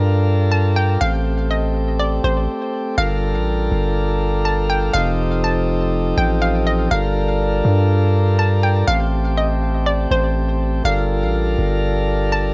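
A chamber organ principal chorus opens this hazy, spacious half-time hip hop excerpt in G minor, its full, chiffy chords sitting up front beside a deep, long 808-style sine bass as the harmony moves through Gm7, Am7b5 and F7 at 122 BPM. From 0.5 s a hollow, bouncy square-wave pluck carries the melody, detuned and bright with a filter sweep, chorus and tape echo, and a brief break at 2.5 s leads into the next section at 3.0 s. Light small-room reverb and worn cassette tape with warbly pitch drift give the recording a worn, old-tape character.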